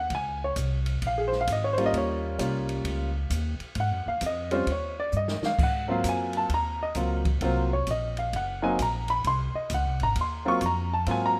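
Relaxed and swinging, this short jazz piano trio fragment moves at 131 BPM in a swung 4/4 with an Ab mixolydian flavor, and the upright piano solos throughout in a smooth, slightly detuned, vintage voice with long sustain that sits up front. Beside it, the pizzicato upright bass sounds woody and bright with steel strings, also up front, while the open acoustic drum kit brings dark cymbals, a medium-tuned snare and a boomy kick, adding a fill from 5.1 to 5.6 seconds. Light reverb and small room ambience give the whole a rough home demo feel as the chords pass from Bbm7 through Eb13 and Ab6 to Ab13.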